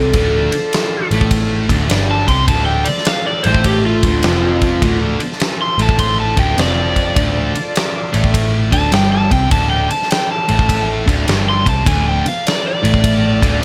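A smoky, heavy sound in a big studio reverb opens this 13.6-second slice of swung blues rock and southern rock, a power-trio groove in D minor at 102 BPM, tuned slightly low to A4 = 437 Hz and resting on a single D minor chord. A double-tracked, bright fuzz guitar riff sits up front beside a dark, round, foam-muted picked bass and a big acoustic kit with a fat snare, punchy kick, ride cymbal and rolled-off top. Over them an overdriven slide guitar, played with fingerpicks and trailed by tape echo, carries a warm solo melody throughout, while a very quiet, gritty tonewheel organ holds thick sustained chords through a rotary speaker.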